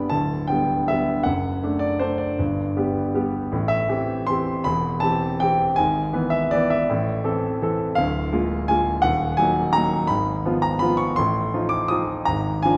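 Bittersweet and elegant, this classical piano waltz moves in 3/4 at roughly 150-180 BPM with a supple rubato feel. A solo grand piano carries the whole 12.8-second fragment, cut from a longer piece, and its tone is clear, smooth and slightly vintage, with short sustain and an up-front presence. The playing spans a broad register, from a deep D1 up to Eb6. The harmony opens in G and passes through Am7 and E/G# before turning darker around 9.0 seconds on Ebm, then ends unsettled on Bb7/Ab. A lush reverb of a church or concert hall, lingering about 1.8 seconds, surrounds the piano with a spacious, resonant halo.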